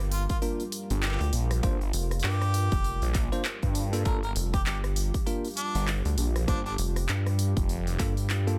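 A dark analog pad and a rubbery square-wave bass open this swaggering, playful glitch hop piece in G minor, cut from a longer track. The pad holds moody, evolving Gm7 chords in the background, with chorus and sidechain pumping. The hollow, bouncy bass sits up front with tube saturation, soon joined by a swirling, detuned saw bass run through a phaser from 0.9 seconds. At a loping 99 BPM with a swung 16th-note feel, a glitchy kit of handclaps, clicky hi-hats and rim clicks drives the groove over a punchy, layered electronic kick. A bell-like tine electric piano adds clean stabs, pumping and echoing on tape. A harmonica with light vibrato and a smooth top carries the solo melody until 6.7 seconds, trailed by tape echo, all within a dense, heavily limited modern master and digital ambience.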